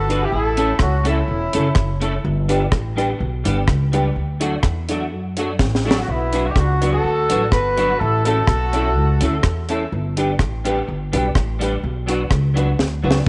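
Ska at 125 BPM in B minor with a light swing, this mischievous, energetic excerpt sets a mellow horn section's melody (heard 0.0-2.0 and 6.0-9.7 s) over a woody pizzicato upright bass, a clean semi-hollow electric guitar with ensemble chorus, boxy, slightly detuned upright piano stabs and a dry, deep reggae drum kit with a high-tuned snare and tight kick, all in a roomy echo-chamber space with drum fills at 5.6 and 12.8 s.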